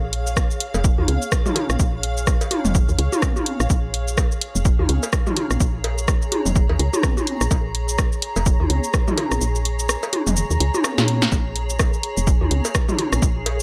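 Minimal techno with a sparse, hypnotic swing, built on a woody, mellow FM bass and a blurred granular pad that both pump against the beat, while a punchy, tape-warm analog drum machine of hi-hat, rim click, shaker and snare is soon joined by an up-front electronic kick, and overdriven cowbell and toms echo in dub fashion, all held on a single B-flat minor chord as the kick drops out at 9.4 seconds and a drum fill arrives at 11.0 seconds in this cut from a longer piece.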